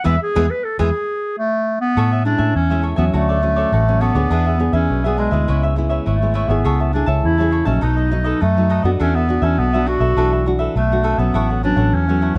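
A straight 4/4 samba groove at 102 BPM sets a lively, playful mood in A major for this short cut from a longer piece. The opening 2 seconds are marked by a band accent over an E chord before the harmony settles into a flowing progression of Amaj7, Dmaj7, E7, C#m7 and B7, resting on an E9sus4 and closing on A69 at 11.4 seconds. A mellow, soft-attacked clarinet carries the melody up front in a classical style, sounding distant and roomy in its solo role. Beneath it, a crisp, picked cavaquinho and a full-bodied, fingerpicked nylon-string guitar with a deep classical tone fill out the acoustic accompaniment. A vintage foam-muted electric bass enters at 0.1 seconds with a dark, round, punchy, amped sound placed prominently in the mix. Close, detailed microphones and light reverb give the recording an intimate clarity.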